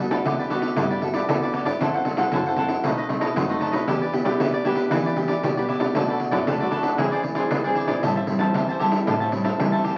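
The jingly pandeiro stands out most, sitting up front with soft hands, though it carries a distant, large-room quality, in this sunny, lively samba and choro cut from a longer piece at 116 BPM in a straight 4/4. A crisp, picked cavaquinho, also up front, and a classical, fingerpicked nylon-string guitar with a warm tone share the accompaniment throughout, while a slap-like FM bass with a snappy, metallic attack and a digital, decaying tone sits in the background. The harmony moves through jazzy chords, opening on Gmaj9 and passing through F#m7b5, B7b9 and Em7 before reaching Bm7, Eaug7 and finally Am7 at 8.0 seconds. A wet small-room reverb surrounds the playing, and the whole sound carries the character of a very old 78 rpm record with vinyl crackle.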